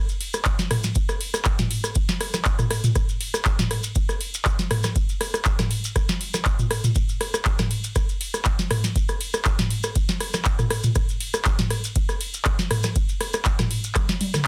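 A driving house groove at 120 BPM in 4/4, with a light 53% swing on the sixteenths, runs through this hypnotic drum-only fragment cut from a longer track. A booming analog drum machine sits up front, supplying handclaps, metallic hi-hats, ride cymbal, rim clicks, toms and a tonal snare, with a short room ambience on the snare, clap and hats. A deep electronic kick joins at 0.5 s, also placed up front and carrying the same tape-warm character from being re-recorded in a small room. Grainy, mellow acoustic maracas sit further back in a small space, adding texture under the machine. Light reverb surrounds a dense, heavily limited modern master, and a drum fill at 14.0 s closes the passage.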